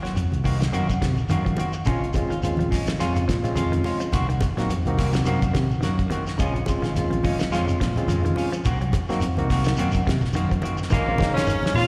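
A clear, vibrato-rich tenor saxophone steps up front at 10.9 s with an edgy, punchy second tenor behind it, capping an intense, driving afrobeat groove in Bb minor at 106 BPM with swung sixteenths, where a cloth-damped, thuddy drum kit with a fat snare, a round fingered electric bass, a grainy shekere and low-tuned, thick-skinned congas churn beneath two dark, clean semi-hollow guitars, one on echoing arpeggios and one on chorused stabs, while a barky tine electric piano joins at 1.9 s over alternating Cm7b5 and Bbm7 chords, the live mix ringing through the venue's PA into a lush hall reverb.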